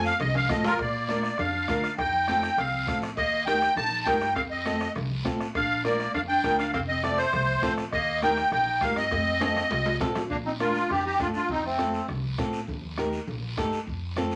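Set in a moderate studio reverb, this joyful, danceable cumbia excerpt puts a reedy, shimmering musette accordion up front on the melody. A forceful, vintage-toned clarinet with light vibrato adds a jazz-style second line from 0.8 s, while a fingerpicked flamenco guitar, complete with audible finger squeak, supplies the accompaniment. A woody, growly pizzicato upright bass gives a thumpy foundation to a straight 4/4 groove that cycles through Bb, F, F7 and Eb chords. A raspy guiro scrapes along, with a soft-beatered bombo, distant high-tuned congas with a thin skin, and ringing metal-shelled cowbell and timbales sitting in the background; the cowbell and timbales stop at 10.2 s, around a drum fill. The accordion and clarinet both end at 12.1 s, leaving guitar, bass and percussion to carry the final moments.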